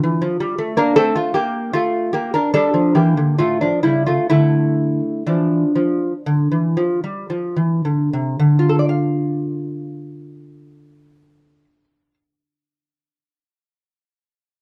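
Classical baroque-style dance for solo lute, solemn and introspective in a free, rubato 4/4 that slows through the opening 8.4 seconds, with the bright, delicate fingerpicked gut and double strings, some doubled at the octave, sitting up front in a dry, close 1970s-style studio sound touched by reverb, cut from a longer piece, the lute sounding until 12.1 seconds.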